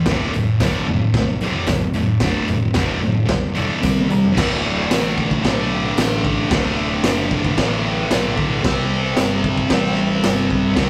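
A rough rehearsal-room recording with moderate reverb captures a swaggering, raw garage rock excerpt, led by a thick, bright, double-tracked fuzz guitar riff up front alongside a boomy, gritty drum kit with dark cymbals, while a punchy fingered electric bass and a jingly tambourine sit in the background, and a drum fill at 3.8 seconds leads into the second section at 4.4 seconds.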